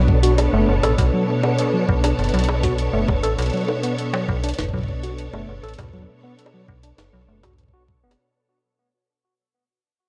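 IDM at 100 BPM in a glitchy, melancholic mood, this fragment cut from a longer piece rests on a single Bm7 chord as it fades out across its 8.2 seconds. A silky string machine holds up-front sustained chords through ensemble chorus and sidechain pumping over a metallic FM bass with tube saturation, while an overdriven tine electric piano, gritty through a combo amp, plays filtered, delayed arpeggios. A thumpy, pitched-up electronic kick and a sampler-style jungle kit of bongos, hi-hat and snare sit in studio reverb, and the whole recording carries a moderate echo chamber and the warbling pitch drift of worn cassette tape.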